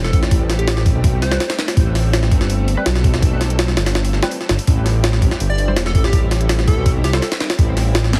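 Squashed into a heavily compressed, radio-like sound with little reverb, this raw, nostalgic drum and bass cut from a longer piece sits in A minor at 165 BPM on a single Am9 chord, driven by an up-front, pitched-up jungle sampler kit with a thumpy kick, high-tuned snare and hi-hats in studio reverb and a deep, rumbling detuned saw bass, while a silky string machine with ensemble chorus and 12-bit sampler grit sustains in the background, very quiet muted dub chord stabs enter at 1.3 s, and a bright, plucky unison lead with dub echo plays the melody at the start and returns at 5.5 s.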